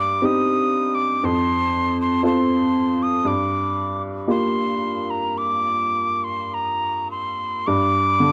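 Haunting and mournful, this brief fragment of a Celtic slow air in G minor drifts in rubato at roughly 49-61 BPM, as a breathy, mellow metal mid whistle with vibrato, tongued notes, chiff and rolled-off highs carries the expressive melody up front over a clear, woody upright piano moving through Cm/G, F, Gm7 and G5 chords, all captured in a dry, close 1970s-style studio sound with a touch of reverb.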